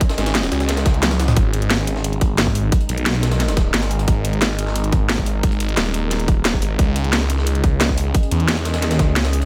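A swirling, thick phased saw bass sits up front from 0.2 seconds, its detuned sawtooth tone saturated and bright with sidechain pumping, driving this tense, futuristic stretch of dark technical drum and bass at 177 BPM in G# minor. Alongside it, an overdriven electronic kick and a layered drum and bass kit with a cracking snare, bright hats and toms push hard up front, with a drum fill at 1.0 seconds, while a gritty, pitched-up breakbeat kit with a high-tuned snare sits in the background. A deep, moody ambient pad with chorus and its own reverb holds slow-attack chords behind everything, moving from G# minor to C# minor at 6.8 seconds in a dry, tight mix.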